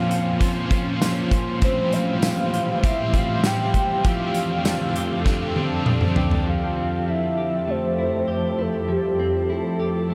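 This dreamy, ethereal dream pop excerpt opens with a round, octave-layered synth lead carrying the melody over a detuned, granular ambient pad, clean picked electric guitar arpeggios with lush chorus and delay, a bright overdriven guitar with tremolo, and a loose, up-front indie drum kit of kick, snare, hi-hat, tambourine and toms. A drum fill runs from 5.3 seconds, the drums stop at 6.5 seconds and the cranked guitar at 7.0 seconds, leaving the lead, pad and clean guitar to drift over a Fmaj9 chord. The whole mix is soaked in a huge, wet ambient reverb, with shimmer reverb on the melodic parts adding an airy glow.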